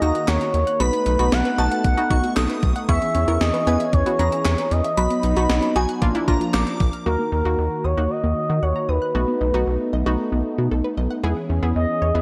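Cool and driving, this synth-pop excerpt moves in a straight 4/4 over a minor-leaning chord cycle that opens on Ebm and returns to it at 7.1 seconds. Up front, a smooth, expressive sawtooth lead carries the melody with portamento, vibrato and a soft attack, coloured by chorus and analog delay. Alongside it, a rubbery, hollow square bass bounces at the bottom, while a round, nasal analog pluck and a bold, brassy pad with chorus supply accompaniment and sustained chords. In the background, a lush, detuned unison pluck spins arpeggios through analog delay, and for the first 6.9 seconds a shimmering, dreamy FM bell adds a second line through ensemble chorus and phaser. A tape-tinged 80s digital drum machine with a thumpy kick, gated-reverb snare, handclaps and hi-hat drives the first section, then drops out at 7.1 seconds, leaving the synths suspended in a lush hall reverb.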